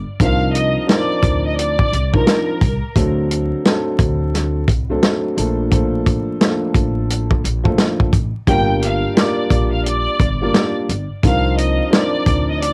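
Vinyl crackle, a home-cassette sound and light reverb frame this reflective, dark boom-bap hip-hop excerpt at 87 BPM in G minor, where a tight, up-front soul drum kit with swung sixteenths plays alongside a woody pizzicato upright bass and a boxy, mellow upright piano with audible action noise, while a distant, bowed violin section with vibrato, filtered and given cassette tape echo, carries the melody from 0.2 to 2.9 seconds and returns at 8.5 seconds over chords moving from Cm11 through D7, Bbmaj7 and Gm7.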